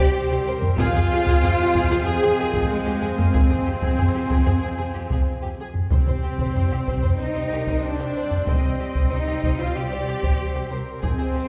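This excerpt, cut from a longer piece, sounds set back in a wet concert hall, with a long reverb tail blooming around a dramatic, epic orchestral film score in C minor at 94 BPM in a straight 4/4. A warm violin section carries the melody with soft-attack vibrato, while a darker, woody second violin line and a distant, hollow silver concert flute add second lines in the background. The rich viola section supplies intense, smooth-topped accompaniment. Clear trombones and dark, roomy French horns hold sustained chords very quietly, joined by a tight woodwind section in the background. The bass is anchored by a focused, close cello section and an even, smooth double bass section. From 0.6 s a taiko ensemble struck with hard sticks sits up front as the harmony moves from C5 to Fm at 0.8 s and settles on Cmadd9 at 5.9 s.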